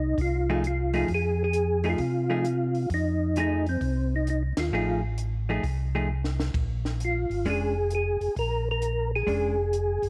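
Bluesy and soulful, this soul jazz organ trio swings in 4/4 as a percussive tonewheel organ with key click carries the melody through a slow rotary speaker and chorus vibrato, a round, mellow second organ holds the bass, a dark, clean hollow-body jazz guitar comps up front from 0.5 s, and a compact cocktail drum kit with a punchy kick and high-tuned snare sits back in a small room; the band hits an accent together at 4.5 s, and a drum fill from 6.1 s leads the move from F7#9 to Bb7#9 at 6.5 s, the whole trio set in light studio reverb.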